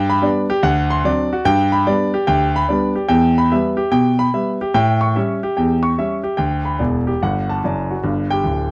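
A clear grand piano plays stride jazz alone in G major at 146 BPM, swinging its eighth notes with exuberant, playful energy across a span from deep bass to bright upper notes. Close, detailed microphones place the piano up front in an intimate, natural sound with audible action noise and light reverb. The harmony moves from G through D7, Em and A7 before a fill between 6.8 and 8.0 seconds carries this short cut from a longer piece to a closing G chord.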